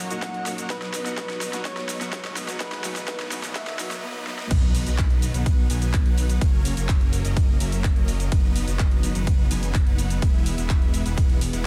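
A dense, heavily limited festival progressive house mix with digital ambience opens on a build-up in B major at 126 BPM, its mood uplifting and euphoric, taken from a longer piece. Huge, lush supersaw chords carry the riff under a filter sweep while a soft, round FM-style synth lead with chorus and dub echo sings the melody, and a clear baby grand piano, gritty with vintage sampler texture and pumping, sits in the background with accompaniment until 4.0 seconds. A very quiet bowed string section holds smooth sustained chords throughout, and a very quiet electronic riser and impact sweeps into the drop. The big-room drum kit plays a fill through the build, its overdriven, huge snare joined by handclaps, hi-hat, shaker, ride and crash, while a punchy, overdriven kick sits up front. At 4.5 seconds the drop lands with the impact and a thick, mellow detuned saw bass with chorus and sidechain pumping, driving the progression from B through F# to E.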